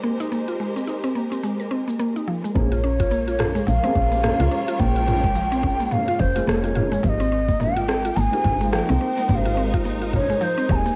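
A swung 4/4 groove at 107 BPM underpins this meditative organic downtempo excerpt in Bb dorian, with an overdriven electronic kit of crisp hats, rim click, shaker and toms arriving at 0.2 s and a gritty, thumpy kick joining at 2.6 s alongside a round, woody FM bass. From the start a detuned, chorused mallet-like synth pluck arpeggiates through a filter sweep over bowed string chords with vibrato and portamento and a felt-muted upright piano whose action noise sits boxy and intimate in the background, all moving from Abmaj9 to Bbm7. At 2.6 s a breathy ney takes the melody up front with vibrato and delay, the whole mix carrying the hazy grain of a cassette home recording in a small room.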